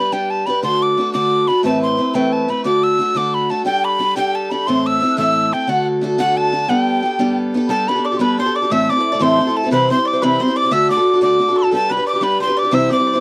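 A mid whistle and a picked acoustic archtop guitar open this cheerful, rollicking Celtic folk excerpt together, moving in a straight 6/8 at 119 beats per minute in G major. The whistle carries the melody up front, airy and crisp with a touch of chiff and vibrato, while the boxy archtop guitar, also up front, supplies picked accompaniment through chords such as G, D, Amadd9 and Am. At 3.7 seconds a breathy, mellow wooden flute joins with a very quiet, distant second line, tongued and slightly unsteady, with its own vibrato. When the second section arrives at 7.7 seconds, a bright, woody mandolin adds another second line from the background, its double strings picked over a progression that moves through Am, C and D before settling on G. The sound is dry and close in the manner of a 1970s studio, with only light reverb, and the passage is cut from a longer piece.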